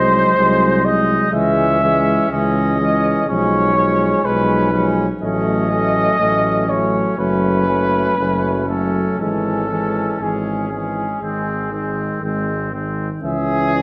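In a straight, unhurried 4/4 at 61 BPM, this classical brass quintet passage in C# minor carries a grave, heroic mood and is taken from a longer piece. Up front, a mellow cornet sings the melody with light vibrato, yet it sounds distant and roomy. A clear trumpet traces a quieter second line beneath it in a similar distant manner. A French horn with a warm, smooth top and a dark trombone sitting further back fill in the accompaniment, both with light vibrato, while a prominent tuba anchors the bass. All five parts play throughout the 13.8 seconds, opening on a G#7 over B# that resolves to C# minor, then moving through F# minor and a G# chord before settling back on C# minor at 13.2 seconds, all within a wet recital hall reverb.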